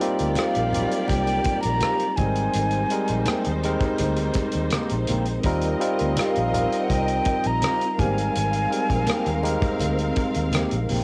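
A breathy metal flute with vibrato, a soft attack and lifted highs carries the melody from 0.4 to 9.4 seconds in this warm, lush 1970s-style soul excerpt at 83 BPM, floating over a bright, barky tine electric piano up front, a distant bowed string section with expressive portamento, a small-room drum kit of hi-hat, tight kick and rim click, a dark, round foam-muted fingered bass, a twangy, slightly broken-up electric guitar riff with subtle chorus set in the background, and very quiet low-tuned congas, while the harmony alternates between Eb69 and Abmaj9 under light reverb and the character of a home cassette recording.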